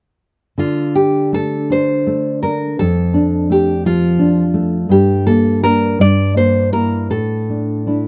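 An unhurried 6/8 lilt at 55 dotted-quarter beats per minute sways with uneven, rubato timing in this elegiac, solemn romantic duo in D minor, cut from a longer piece. From 0.6 to 8.1 seconds, two nylon-string guitars sit up front: one fingerpicks a bright classical melody with fresh-sounding strings, and the other thumb-plucks a full-bodied, deep accompaniment, finger squeak and all, moving through Dm/F, Gm, Edim/G and Asus4. The dry, close sound recalls a 1970s studio.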